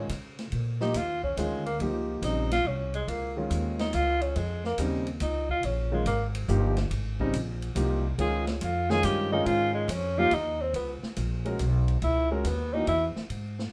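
Cool and intense, this modal jazz waltz in Bb dorian swings along at 141 BPM in 3/4, in a short passage cut from a longer piece. A tenor saxophone with a soft attack and vintage vibrato carries a solo from 0.5 seconds through to the end, sitting up front in the mix. Beneath it, a concert grand piano with a deep bass register comps through harmonies that move from Bbm9 to Db and on to C#m9. A woody, growly pizzicato upright bass stays close and present, while a big-band drum kit with a punchy kick, medium-tuned snare, hi-hat and ride swings quietly in the background. A moderate studio reverb gives the group a natural sense of space.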